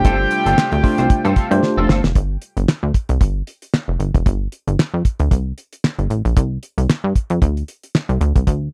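A dry, close 1970s-style studio sound frames this slick, funky, swung early-eighties boogie funk at 114 BPM, where a fat, warbling analog lead with chorus and tape echo, a worn, slightly out-of-tune tine electric piano through a phaser, a shimmering, very quiet pulse-width pad and a twangy, slightly broken-up electric guitar riff crowd the opening two seconds, and after a drum fill at 1.6 s only the punchy, plucky analog bass and the damped, up-front drum kit, with its fat snare, tight kick, hi-hat and handclaps, carry on.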